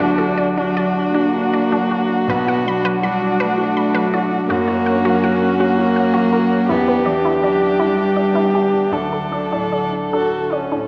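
A dark, woody solo violin carries the melody up front in this reflective, melancholic neoclassical piece for piano and strings, bowed sul tasto with vibrato. Beneath it, a warm, intimate cello plays a second line with an airy bow and soft attack, while a nasal viola and a clear, vintage-toned upright piano with long sustain fill out the accompaniment. A glassy, ethereal FM pad holds very quiet sustained chords, and a juicy, squelchy sawtooth pluck with a resonant filter sweep, chorus, phaser and slapback echo spins bright arpeggios in the background. The music moves in a slow 6/8 at 54 BPM, with uneven beats and rubato, through a chord sequence of D, Bm, F#, Em7 and back to D. Everything sits in a wet recital hall, and the sound carries the worn, warbling pitch drift of old cassette tape in this 10.9-second excerpt cut from a longer piece.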